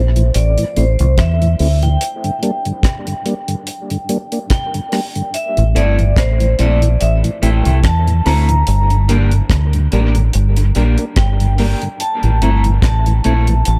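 Meditative and spacious, this dub reggae passage at 72 BPM in A phrygian sets a bright, ringing vibraphone melody with dub echo over a round, up-front fingered bass and a dry reggae kit of hi-hat, tight kick and rim click, while a mellow tonewheel organ with slow rotary speaker and light overdrive fills the chords between Am and Gm, and a slightly broken-up picked electric guitar with subtle chorus joins at 5.8 seconds, all inside a studio reverb.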